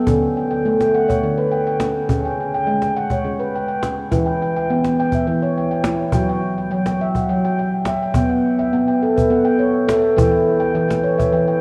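Worn, warbling cassette sound with a long church-like reverb frames this hypnotic, meditative world excerpt in 7/8 at 208 BPM, where an up-front, ringing steel handpan plays arpeggios through its C#3 to G5 range with sharp finger strokes and tape echo, a snappy cajon with snares sits softer beneath it under soft hands, and the harmony moves from D toward Emadd9/F# and Em6 as a second section begins at 6.1 seconds.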